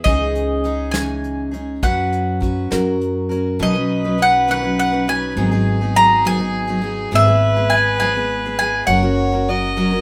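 A moderate studio reverb gives this short acoustic folk excerpt a gentle sense of space, with the mandolin and picked steel-string guitar sitting up front. At 68 BPM in a lilting 6/8, in B major, the mood is peaceful and nostalgic. The bright, round mandolin carries the melody in its doubled strings, over the dreadnought guitar's picked accompaniment, where a finger squeak is audible, and a pizzicato upright bass with a woody, thumpy tone. A soft brush kit with a tight kick and medium-tuned snare plays only from 0.1 to 3.4 seconds, its small-room sound framing the opening passage. At 3.6 seconds a single bowed fiddle enters with a reedy, gut-string tone and a smooth top, adding a second line beneath the mandolin. The harmony moves from C#madd9 through F#sus4 and F# into Badd9, G#m7 and E/G# before settling on F#.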